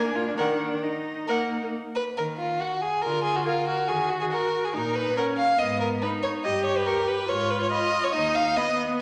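A quick, cheerful classical-period string quartet movement, cut from a longer piece, where a distant, focused first violin sings its high melody in the background, a clear second violin carries a close, up-front line, and a smooth viola and rich, close cello supply vibrato-rich accompaniment and bass beneath a wet scoring-stage reverb, all four parts bowing together through the lively minor-key passage.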